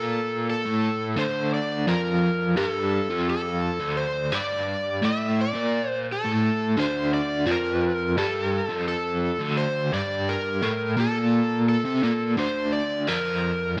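A crunchy, double-tracked electric guitar riff and a warm, overdriven slide guitar melody sound together from the very start of this dark, trippy rock excerpt in D minor at 86 BPM. The picked, bright riff guitar carries a tremolo effect in its lower range. The slide line, played with fingerpicks, sits higher with a slapback echo, and both parts are up front. A moderate echo chamber reverb with a 2.0 s decay surrounds the pair over a single D minor chord for the full 13.8 seconds.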